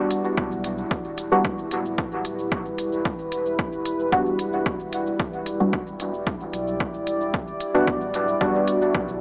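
Bathed in a huge, cavernous reverb and heard as if through a small speaker, this deep dub techno excerpt at 112 BPM in E minor rests on a single Em7 chord, with a moody, detuned sawtooth pad with a slow attack and sidechain pumping, a soft, warbling chord stab steeped in chorus, phaser and dub echo, smooth layered hi-hat and shaker, a punchy analog kick re-recorded in a small room, and a round sine sub bass pumping in the background.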